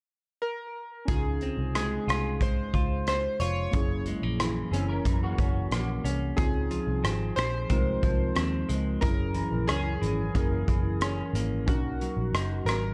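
Glossy, bright retro synth keys carry the melody in this laid-back, dreamy slice of indie and bedroom pop, entering alone at 0.4 seconds with a pulse-wave shimmer and a subtle chorus. At 1.1 seconds the rest of the band arrives at a relaxed 91 BPM in straight 4/4: a loose indie drum kit sitting up front with a punchy kick, hi-hat and rim click, roughened by gritty 12-bit sampler character, and a dark, round, foam-muted picked electric bass. A clean semi-hollow electric guitar adds hollow-body accompaniment with a gentle chorus and a warbly pitch drift, while a second set of lo-fi synth keys brings nostalgic, detuned square and sawtooth tones soaked in chorus and cassette-tape wobble. Around 4.7 seconds a dark, fingered clean electric guitar briefly adds a second line through ensemble chorus and analog delay. The harmony moves between Dbmaj7 and Gb7 before landing on Cbmaj7, all tuned slightly sharp to A4 = 444 Hz, and the whole cut sits in a small, lightly reverberant room.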